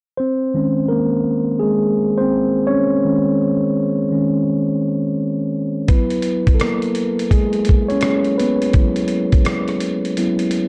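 A lazy, swung sixteenth-note feel in 4/4 sets the pace for this cosy, nostalgic lo-fi hip hop passage, cut from a longer piece. A mellow, clean tine electric piano sits up front and carries the music from the start, holding an Eb7sus4 chord before moving to Gb9sus4. At 5.9 seconds a dusty, sampler-style soul drum kit joins with hi-hat, rim click and a thumpy kick, its compressed, gritty sound re-recorded in a large room yet still close to the listener. The kick drops out at 10.2 seconds, leaving hi-hat and rim click under the keys. Light reverb and digital ambience wrap the whole in a dark, warm production.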